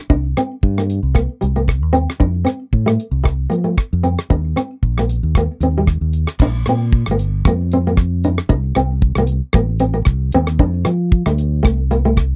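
A dry, close, 1970s-style studio sound frames this carefree, danceable highlife guitar band in Bb major at 114 BPM with a light swing, where a dark, thumb-plucked nylon-string guitar plays accompaniment beside a round, amped fingered electric bass and a damped 70s drum kit with a tight kick, rim click, hi-hat and crash cymbal, all three parts up front throughout this cut from a longer piece.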